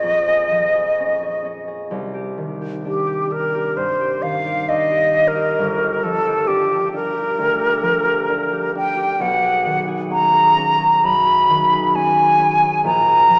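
A bright silver concert flute sings an airy, expressive melody with soft-edged vibrato up front over a ringing, thumb-plucked concert harp in this wistful, mysterious impressionist duo excerpt, drifting in rubato 4/4 at 66 BPM through shifting seventh and added-tone chords, bathed in a wet church reverb with a small-speaker sound.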